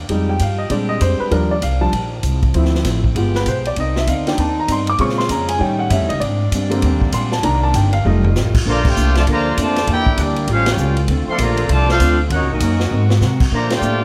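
Big band swing in Bb major at a brisk 197 BPM, this energetic excerpt opens with the up-front grand piano taking a solo over pizzicato upright bass, punchy drums and an edgy, vibrato-laced saxophone section holding background chords, a picked parlour acoustic guitar slipping in at 3.8 seconds, before the mellow, roomy trumpet section takes the melody at 8.7 seconds with a brilliant, tight trombone section carrying a second line through band accents and drum fills under light reverb.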